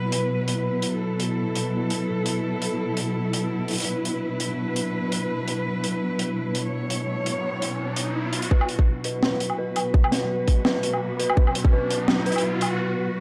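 A swung half-time drum and bass groove at 168 BPM in B minor drives this spacious, cinematic excerpt, where a crunchy, gritty breakbeat kit of hi-hat, high-tuned snare and woodblock backs smooth bowed cello chords that pump under sidechain and pass through a filter sweep, while an eerie metallic FM drone hums in the background until 8.5 s, when a tight, up-front electronic kick and a dark detuned synth bell arpeggio on B4 with tape echo join an electronic riser building toward a brief break at 12.8 s.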